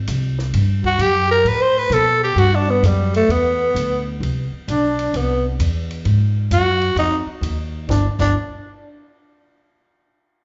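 Warm and swinging, this excerpt of small-group swing and bop jazz in G major moves at 131 BPM, with a woody pizzicato upright bass up front from the start, a compact cocktail drum kit with dark cymbals, a high-tuned snare and a tight kick joining at 0.1 seconds, a mellow trombone with light vibrato sitting in the background from 0.8 seconds, and a raspy, growling tenor saxophone with scooped notes taking the close-miked lead at 0.9 seconds, both horns carrying a slapback echo, all heard as a live gig through the venue's PA with club reverb and a muffled top end.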